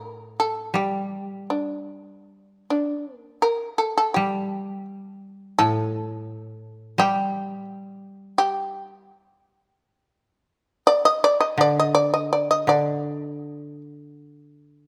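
Shamisen and koto sound together from the opening moment of this calm, austere piece of Japanese traditional music, taken from a longer work. The shamisen carries the melody in a middle-to-high register, its plectrum-plucked, fretless tone percussive and buzzing. Beneath it, the koto plays a low accompaniment with fingerpicks, giving a mellow, woody and dry sound that sits a little further back in level. The pulse moves in four with a free, rubato feel, and after a brief opening passage a longer second section begins at 3.1 seconds. Both instruments are captured up front with close, detailed microphones in a moderately reverberant room. The shamisen falls silent at 13.8 seconds, leaving the koto to sound alone until 14.9 seconds.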